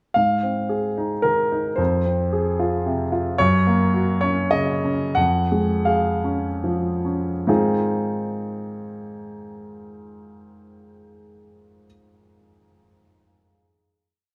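Neoclassical minimalist piano in a hopeful, peaceful mood, this short whole piece in 3/4 and Ab mixolydian has a lone warm, vintage grand piano sitting up front with a smooth single-line melody over rocking broken chords, moving in a free rubato between 70 and 113 BPM, slowing from 2.6 s and coming to rest on a final Ab6 chord held from 7.5 s inside a stone room's wet reverb.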